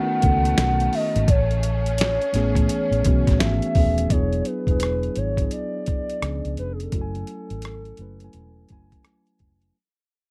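A hollow, woody clarinet-like synth lead with chorus carries the melody over mellow tine electric piano and a distant, lush bowed string section, joined at 0.2 seconds by a dark, round muted fingered bass and a gritty, pitched-down boom bap drum kit with thumpy kick, rim click and hi-hat, all in a smooth, relaxed R&B and neo-soul groove at 85 BPM with a swung 16th feel. The strings drop out at 4.1 seconds as the harmony moves from B9 and Amaj9 to E9, C#7b9 and F#m9, and the whole cut fades out from there through 9.7 seconds. The dry, close sound keeps the piano, bass and tape-warm drums up front.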